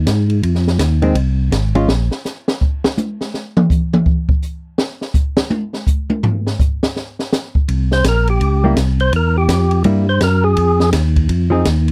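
An open jazz drum kit drives this late-night, bluesy soul jazz organ trio fragment, with a boomy kick, a high-tuned snare and dark cymbals, and it takes a solo break from 1.9 to 7.7 seconds over a swung feel. Around it, a full, lightly overdriven tonewheel organ with audible key click, chorus vibrato and a slow rotary speaker carries the bass line, while a clean, compressed hollow-body electric guitar adds brief fingered accompaniment. Near the end, a fat percussive organ with third harmonic percussion plays a short melody in a close, dry 1970s-style studio sound with light reverb.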